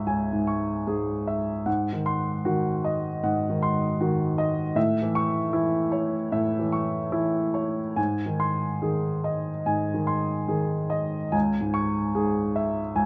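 A clear, open baby grand piano carries this stormy yet bittersweet romantic character piece on its own, moving with free rubato at roughly 69-80 BPM in 4/4 through C# minor, G#7, A and G# before settling back on C# minor at 11.3 seconds, its long sustain sitting up front in a close, detailed recording touched by light reverb.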